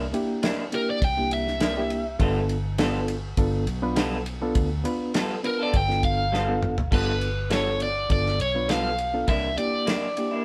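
Swaggering and gritty, this straight-eighth soul blues moves at 102 BPM in 4/4, set in G mixolydian over C9 and G9 chords and taken from a longer piece. An overdriven semi-hollow guitar carries the melody up front with a hollow-body, picked tone, soloing from the start while its line enters at 0.8 seconds. Beneath it, a small old amp gives a second electric guitar a twangy, slightly broken-up, lo-fi edge as it plays tremolo stabs, and a reed electric piano fills in reedy, clean chords with a fast tremolo. A dark, foam-muted fingered bass lays down round, punchy low notes until 9.6 seconds, while a dry, damped 70s kit with a tight kick and medium-tuned snare sits up front, playing a drum fill from 6.3 seconds into the new section at 6.9 seconds. The band sounds like it is playing live together in a stone room with moderate reverb.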